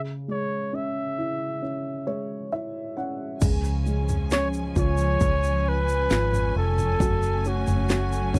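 Heartbroken and emotional, this slow 67 BPM pop ballad excerpt opens on a dark, woody upright piano with audible action noise and a breathy, scooped flugelhorn melody, the piano adding a fill from 1.6 seconds, before a lush bowed string section, a round foam-muted electric bass, a punchy layered electronic drum kit with cracking snare, and a grainy egg shaker join at 3.4 seconds, all captured in a dry, close 1970s-style studio sound as the harmony moves from C#m to C# and on to F#madd9.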